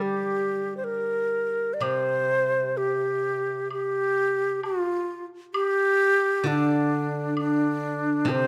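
A breathy, bright bamboo xiao sings a graceful, tender melody up front, shaded with vibrato and tongued notes, in this rubato Chinese traditional chamber excerpt in G yu mode at around 64 BPM, over a silvery, ringing steel-string zither played with fingerpicks in its low register, with a woodblock joining at 1.8 seconds and a light reverb on the room.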